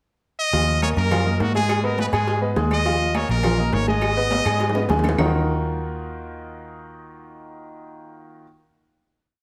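A brilliant, forceful trumpet opens this short, fiery salsa piece in Eb minor at 206 BPM, sounding its first notes in the pickup bar with a scooped, vibrato-laden pop style and a slapback echo. At 0.5 s the band falls into a danceable montuno vamp over Ebmadd9, Abm and Ebsus2, the clear concert grand piano playing its montuno in octaves with audible action noise and long sustain, while a dark, foam-muted vintage electric bass drives a round, punchy tumbao that anticipates the chords. Behind them sits a bed of percussion: ringing, high-tuned congas with slaps and open strokes, tight bongos in steady eighths with cowbell, and close and dry timbales with agogo bell. Very quiet woody claves join at 0.8 s, marking a two-bar time line. The trumpet's motif-based solo melody phrases in sentences up front until 4.9 s, overlapping a drum fill that enters at 4.3 s. The percussion falls away as the group arrives on a final Ebmadd9 chord at 5.2 s. 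Piano and bass ring on into a generous studio reverb, bringing this complete piece to its close.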